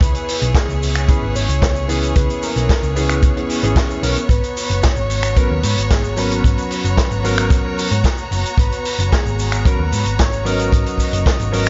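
A steady, straight 4/4 groove at 112 BPM drives this sleek, cosmic nu-disco excerpt, with a punchy acoustic kick and a vintage kit of snare, hi-hat, shaker and finger snaps sitting in a small room with a rolled-off top, under a dark, round hollow-body picked bass. Bright, intense bowed strings pump to the sidechain on sustained chords moving from C#m7 to G#m11 at 4.3 seconds, while a baby grand piano enters at 1.1 seconds with long sustain, sidechain pumping and slapback echo. Over it all floats a soft, mellow octave-layered synth lead carrying the melody, thickened by chorus and tape echo.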